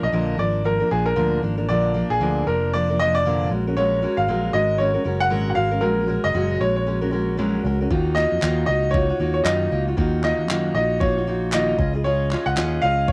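A bright, woody upright piano carries the melody up front in this wistful, reflective acoustic pop excerpt in Eb minor at 116 BPM, with a gentle 16th-note swing and a cassette-tape tint on the piano, guitar and drums. A full-bodied fingerpicked jumbo steel-string guitar and a punchy, amped fingered electric bass support it over chords moving from Bb through Gbadd9 and Ebmadd9 to Dbadd9. At 7.9 seconds a gritty, pitched-up sampler-style jungle kit with a thumpy kick enters, joined at 8.2 seconds by crisp, distant group handclaps in the background, all within a moderate booth ambience on a home cassette recording.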